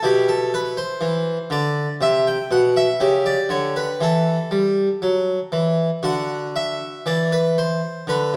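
Grave and solemn, this brief 8.4-second excerpt from a baroque-style suite movement presents a solo harpsichord at a slow 60 BPM in 3/4, moving with a rubato feel. The instrument sits up front, airy and full with the plucked character of a French-style harpsichord on two sets of strings, ranging from B2 to G5. A wet recital hall reverb surrounds the playing as the harmony passes from E5/B through Cmaj7#11 and A7/C# to D.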